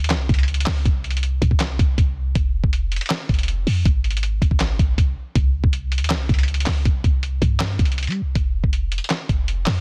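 The beat runs at 160 BPM in 4/4 with a half-time feel, giving this dark, hard-hitting trap excerpt a heavy, deliberate stride in C phrygian. A lo-fi sampler-style drum kit sits up front throughout, its compressed, pitched-down, muffled sound built from a thumpy kick, a medium-tuned snare, handclaps and hi-hat. Underneath, a clean 808-style bass spans F1 to G3 for the whole excerpt, with a deep, boomy sine tone, a fast attack and a mellow, decaying body. The drums sit somewhat louder than the bass. The mix is dry, with little reverb, and the master is dense and heavily limited in a modern style. The opening section gives way to a new section at 6.9 seconds, and the passage runs to 9.8 seconds.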